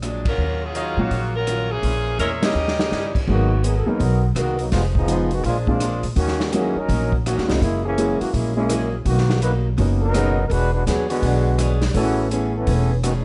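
A picked acoustic archtop guitar, woody pizzicato upright bass and a swinging big-band drum kit start together. The kit has a dark, rolled-off top, a punchy kick and a medium-tuned snare, and it plays crash, ride, hi-hat, snare, kick and rim clicks. This is a sultry, brassy big band swing clip at 166 BPM in 4/4, cut from a longer piece and set in Eb minor. A tight, bright saxophone section carries the melody from 0.3 to 3.1 seconds, while a clear trumpet section with a soft attack adds stabs. An intimate grand piano with audible action noise joins at 1.0 seconds, and the guitar stays in the background with a hint of finger squeak. Band accents hit at 0.2 and 2.4 seconds, and a short drum fill leads into a shift to G# minor at 3.3 seconds, where a loose, up-front trombone section with light vibrato takes a solo through the rest of the passage. The chords move through rich extended harmonies such as Ebm9, G#m9 and Bmaj7 toward a closing Amaj9, all in a light reverb.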